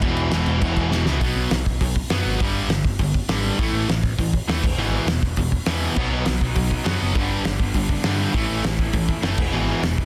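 A straight 4/4 at 202 BPM propels this rowdy, rebellious punk rock excerpt, where a loose, up-front drum kit with a fat snare, punchy kick and dark cymbals fills at 0.9 seconds, a growly overdriven bass and two bright overdriven guitar riffs run throughout, one cranked stack sitting in the background, while a double-tracked, compressed distorted guitar riffs until 1.2 seconds and returns at 6.0 seconds, all in a dry, dense, heavily limited mix cycling through E, B, G and A chords.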